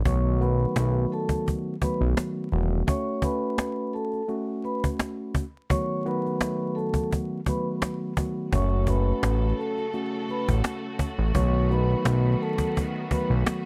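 Dry and dusted with vinyl crackle, this gritty, reflective boom-bap hip-hop excerpt sets a ringing soft-mallet vibraphone melody over a mellow tine electric piano with a cassette-tape tint and a snappy, close cajon, while a fat, detuned analog bass sits out a break from 2.9 to 8.5 seconds and returns at 8.5 seconds alongside a distant, woody string section holding dark sul tasto chords.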